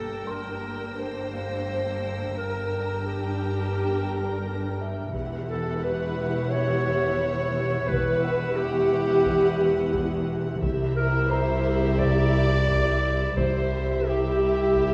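A tense, eerie suspense cue from a film score opens on a full bed of bowed strings, with a clear, classically styled solo clarinet carrying a prominent second line over a lush violin section that sings the melody up high with soft-edged vibrato. A second violin section doubles that inner line in the background, while the violas fill the middle with expressive portamento, and the cellos and double basses lay down a rich, distant foundation, the basses smooth and even. Above them, another violin section holds a focused high texture until about 10.3 seconds, and a felt-muted upright piano adds a faint, mellow, intimate shimmer from 0.3 seconds onward. A taiko ensemble struck with heavy sticks enters in the background at 5.1 seconds, lending a low, ominous weight to the shifting harmony. The orchestra sits in a wet scoring-stage reverb with a small-room ambience, and the passage is cut from a longer piece.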